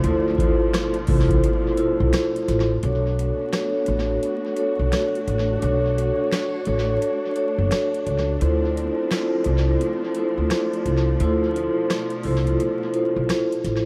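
Dark, lush bowed strings, a woody, growly upright bass and a booming analog drum machine with tape echo, deep kick, crisp snare and metallic hats open this reflective yet tough boom-bap hip-hop excerpt at 86 BPM in B minor with a swung 16th feel, joined at 0.1 seconds by a mellow, ringing soft-mallet vibraphone with a cassette-tape tint and at 0.7 seconds by a barely audible dry finger snap, the kick dropping out at 1.4 seconds before the break arrives at 2.8 seconds in an echo-heavy, small-room mix dusted with vinyl crackle.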